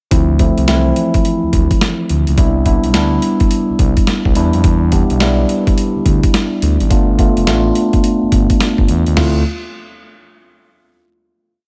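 A hard-swung boom bap drum kit sits up front in this short, confident new jack swing piece at 106 BPM in D dorian, its thumpy kick, high-tuned snare, hi-hat, toms and crash carrying a compressed, pitched-down 12-bit sampler grit. A smooth, gliding synth bass of detuned sawtooth and triangle tones with vibrato and portamento plays a bouncy swung line full of muted ghost notes and chromatic approach notes, while a mellow tine electric piano with phaser pushes rootless Dm9, Cmaj9, Em7 and G9 chords dressed with grace notes. The slick R&B groove runs as a single verse before landing on a final Dm9 at 9.2 seconds, which hangs in digital ambience until about 11.4 seconds.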